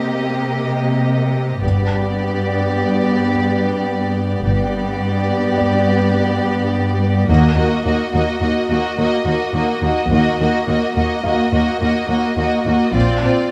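Uneasy and ominous, this suspense film cue excerpt moves at 106 BPM in 5/4, with bowed violins carrying a rich, vibrato-laden melody and a lush second line over a dark, intimate viola section and a focused, up-front cello bass, while a very quiet felt-muted upright piano adds mellow texture with audible action noise, a smooth double bass section enters at 1.6 seconds, and the harmony shifts from Cm7 through G and Ebm to Bbadd9 inside a moderate scoring-stage reverb.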